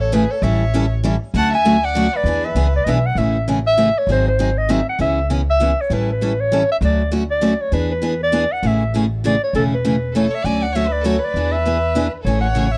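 Acoustic string swing in the jazz manouche tradition, this lively passage moves at 198 BPM in 3/4 with a swung eighth-note feel, centred in A major. A breathy clarinet carries the melody up front throughout, its jazz-style solo phrasing marked by vibrato, scooped notes and a smooth top. A clear, focused bowed violin adds a distant second line with its own vibrato, sounding at the start, dropping out at 2.9 seconds and returning at 10.1 seconds. Underneath, a woody, thumpy pizzicato upright bass on gut strings gives a dark low end, while a picked steel-string parlour guitar with fresh strings and a boxy tone supplies accompaniment up front. The harmony moves through chords such as A7, Dmaj9, G#7, C#m7 and Amaj9, and the dry, close 1970s-style studio sound keeps this short passage from a longer piece intimate.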